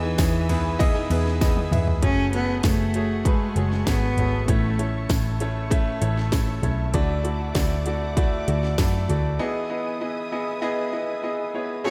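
Soaked in a dreamy hall reverb, this hopeful, uplifting piano-driven pop excerpt at 98 BPM in E major sets a clear, woody upright piano up front beneath a pure, nasal, floating bowed cello melody, with a lush string section and a brief, dark picked steel-string acoustic guitar riff in the background, a round, foam-muted vintage electric bass, a punchy, tape-warm house drum kit with cracking snare and metallic hats, and a jingly tambourine, all passing through a drum fill at 1.4 seconds before the bass stops at 9.4 seconds and a break follows.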